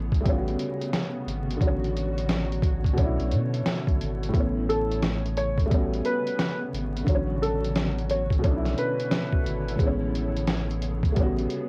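A compressed, sampler-style drum kit sits up front with a thumpy kick, fat snare and hi-hat, pitched down and muffled as if re-recorded in a small room. This cosy lo-fi hip hop fragment, cut from a longer piece, moves at 88 BPM in 4/4 with a 16th-note swing, and its mellow mood rests in A major on a cycle of lush chords such as A13, Dmaj7/A, Bm11 and Amaj9. A dark, woody upright piano carries the accompaniment close to the ear, its action noise audible and its vintage tone softened by tape and filtering. A deep, saturated sub bass with a fast attack holds the low end, while a blurred, detuned granular pad drifts in the background, evolving through its own reverb. From 4.7 to 9.8 seconds, a soft, felt-muted second piano adds a brief, intimate melody. The whole is wrapped in moderate booth ambience, home-cassette grit and vinyl crackle.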